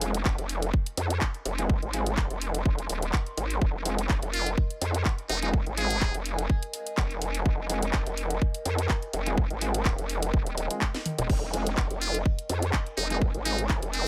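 Bass house with a bouncy, swaggering 16th-note swing, built on a tight, tape-warm electronic kick and a garage kit with cracking snare, handclaps, hi-hat, toms and crash, all up front with a drum fill at 10.9 seconds, under a nasal, saturated vowel-sweep wobble bass with sidechain pumping, gritty 12-bit grand piano stabs with dub echo and a warbly, nostalgic tape-like pad in the background, while a buzzy, metal-muted trumpet with vibrato and scooped notes cuts in at 4.3 and 12.0 seconds in this dry cut from a longer track.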